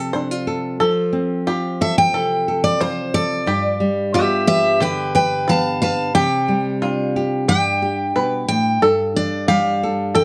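A full-bodied, up-front picked steel-string acoustic guitar enters at 1.8 s to carry the melody of this peaceful, nostalgic acoustic folk excerpt at 90 BPM in G mixolydian, over a fingerpicked classical nylon-string guitar with audible finger squeak and the twangy, percussive arpeggios of a bluegrass banjo played with fingerpicks, all in a moderate studio ambience as the chords move from F through G7 and Csus2 to Gsus2 at 8.8 s.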